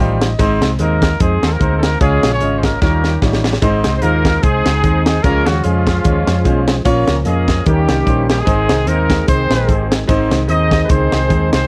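A swung, uptempo gospel groove in four is driven by a tight funk drum kit with a high-tuned snare, snug kick and hi-hat, alongside a dark, round hollow-body electric bass and an intimate baby grand piano with audible action noise that opens with a short fill. From 0.8 seconds, a punchy solo trumpet carries the jubilant melody with a vintage horn section in octave doubling behind it, and at 3.6 seconds a percussive tonewheel organ enters in the background with lightly overdriven sustained chords, fast rotary speaker and chorus vibrato. Cut from a longer piece, this reverent, celebratory passage has a dry, close 1970s-style studio sound and includes a drum fill at 2.8 seconds.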